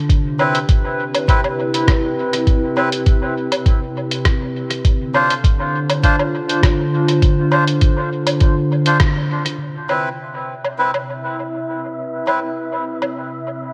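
Ambient dub with a spacious, hazy mood, cut from a longer piece, where a warbling, detuned tape-like pad holds sustained Cmaj7 and Dm7 chords under a muffled, thumpy electronic kick and a pitched-down, lo-fi sampler-style kit of hi-hat, rim click and woodblock with dub echo, while a reedy, nasal melodica plays gritty stabs. A band accent lands at 9.0 seconds, from 9.6 seconds a filter sweep moves across the pad, and at 10.6 seconds an airy, wind-like tuned noise texture drifts in.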